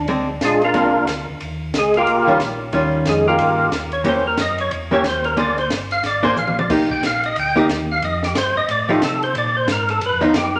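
A fast swung groove at 181 BPM in 4/4 drives this soulful, greasy soul jazz organ trio passage in Bb mixolydian, cut from a longer piece. A percussive tonewheel organ carries the melody as a solo across the full 10.6 seconds, its fat, lightly overdriven tone sharpened by third harmonic percussion and vibrato through a slow rotary speaker, sitting up front. Underneath, a second tonewheel organ plays the bass line with a round, dark, clean sound, audible key click and its own slow rotary swirl. A miked, amplified hollow-body archtop guitar adds picked, compressed accompaniment, clean and shadowy in colour and also placed up front. A compact cocktail drum kit keeps time with dry acoustic character, dusky cymbals, a high-tuned snare and a punchy kick, dropping in a brief fill at 6.4 seconds. The harmony moves through Bb9, Eb9, Edim7, Cm7 and F9 before closing on Abadd9 and Gaug7, all bathed in a wet large-studio reverb.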